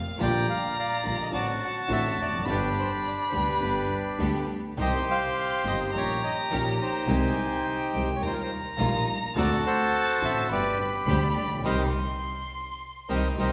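Tense and dramatic, this tango excerpt unfolds at 105 BPM in 4/4 with a rubato feel, set in C minor. A bowed solo violin sounds first at 0.0 s, its expressive vibrato and portamento carrying a second line in a high register, as the reedy, dark bandoneon takes the melody up front. A vintage-toned grand piano with deep bass and audible action noise supplies the accompaniment, while a bowed double bass adds a biting, earthy low end touched with light vibrato. A very quiet symphonic string section places lush, focused stabs in the middle register. The harmony moves through chords such as Gm7/Bb, D7 and Abmaj7/C toward Cm7, where the band strikes an accent from 11.6 s, and the whole recording sits in a church-like reverb with vinyl crackle.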